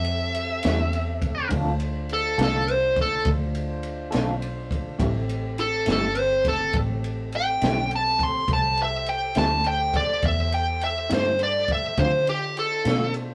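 A brooding, mournful slow blues in 12/8, this piece is cut from a longer performance and is dominated from the first moment by a smooth, overdriven lead guitar soloing up front with a bright, picked tone that climbs as high as C6. Beneath it a tonewheel organ holds sustained chords through a slow rotary speaker, its clean, clear voice sitting far back in the mix. A vintage muted fingered electric bass supplies a dark, round, foam-muted low end, while a compact cocktail drum kit of kick, snare and ride adds a punchy kick, a high-tuned snare and a rolled-off top. At 0.6 seconds a second electric guitar enters, played through a small old amp with tremolo, offering slightly broken-up, compressed accompaniment. The harmony leans between Am7 and Dm7, and the whole take has the rough, close feel of a rehearsal room with a moderate touch of reverb.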